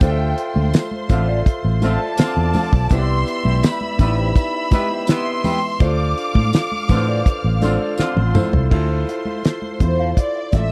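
A steady, straight four-beat groove comes from a damped 1970s drum kit with a fat snare and tight kick sitting up front, joined by a round, foam-muted fingered electric bass that is dark and punchy, plus bright congas and a jingly tambourine further back. This is lush, bittersweet 1970s-style soul with a cinematic sweep. A smooth, even violin section carries the melody at a distance, while a focused string section adds a bowed second line and a clear grand piano, intimate enough to reveal its action noise, supplies accompaniment. An electric guitar through a small old amp plays a slightly broken-up riff in the background, coloured by wah and tremolo, and a vintage horn section with light vibrato punctuates with stabs from 1.1 seconds. The harmony moves between Dm7 and Cmaj7 before a drum fill at 8.0 seconds leads to a Dm9 where the violins take a solo at 8.7 seconds. The sound is dry and close, a 1970s-style studio capture with little reverb, cut from a longer piece.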